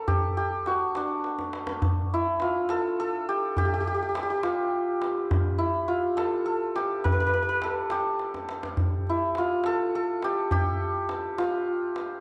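A hammered santur carries the melody from the first moment, its shimmering, ringing tone placed up front and trailed by an analog delay. This is a stately Persian modal ensemble piece in 6/8 with a straight feel, a fragment cut from a longer performance and tuned to A4 = 443 Hz. The tombak joins at 0.1 seconds, sitting a little lower in level than the santur, with a deep, warm body and hard-handed strokes. The drum plays short fills at 1.3 and 8.2 seconds; the first marks the move into a longer second section at 1.8 seconds, which continues to the end. Both instruments sound acoustic and are bathed in a wet recital hall reverb that gives the music a spacious, warm air.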